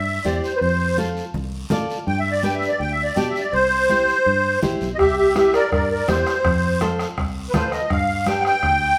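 A reedy, shimmering musette accordion sits up front with a boxy small-room tone, soloing through this sunny, danceable cumbia excerpt in C major at 165 BPM over a C, F and G progression that closes on G7. A fingerpicked nylon-string guitar adds full-bodied classical accompaniment, and a round, foam-muted fingered electric bass holds the low end. Bright, damped congas sit in the background alongside a raspy, dry guiro, while a soft-beater bombo with a vintage, band-limited sound joins at 5.0 seconds, all played live in one room with a wet stone reverb.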